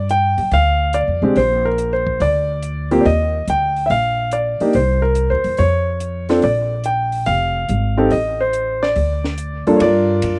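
An intimate grand piano, with audible action noise and long sustain, carries the melody from the start over a woody, thumpy pizzicato upright bass on gut strings, both sitting up front, while a compact cocktail drum kit with a dark, smooth tone, high-tuned snare and punchy kick enters at 0.1 s well back in the mix, giving this playful, swinging jazz piano trio excerpt in Bb major at 142 BPM a dry, open-air sound.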